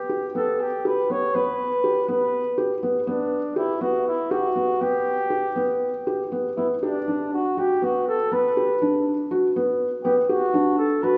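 Contemporary chamber music in an uneven 7/8 metre, restless yet hopeful, cut from a longer piece. A soft-attacked, roomy flugelhorn carries the solo melody in a classical style over mellow, intimate arpeggios from a felt-muted upright piano that sits up front. A wet scoring-stage reverb surrounds the pair, and at 6.6 seconds the harmony moves from G to Gmaj7 as a second section begins, running to the close at 11.2 seconds.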